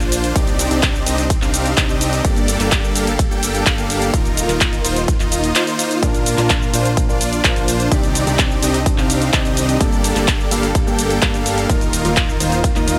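Lightly reverberant and polished, this uplifting, euphoric stretch of festival progressive house moves at 127 BPM in a straight 4/4, cycling through Cmadd9, Gmadd9, Ebsus2 and Bb. Huge, detuned supersaw chords carry the riff up front with dub echo, over a lush, slow-attack supersaw pad swept by phaser in the background and a fat, saturated analog bass with a filter sweep, all three pumping to the sidechain. A punchy, layered electronic kick lands from 0.4 seconds alongside a produced big-room kit of handclaps, hi-hat, ride cymbal and shaker, and at 6.0 seconds a soft, intimate felt-muted upright piano joins quietly behind them, echoing and pumping as well.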